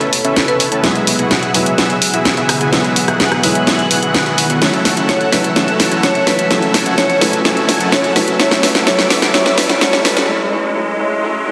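An uplifting, anthemic festival progressive house build-up opens with an up-front drum fill of cracking snare, hi-hat and rim click, a huge detuned supersaw riff through a low-pass filter and delay, a dark, boxy grand piano with delay, a warbling chorused pad in the background and a very quiet, fat analog bass. A background riser begins at 0.5 s, and a woody, bright marimba melody with delay returns at 5.1 s, everything set in a lush hall reverb, until the other parts stop at 10.3 s and leave piano and riser alone for a brief break.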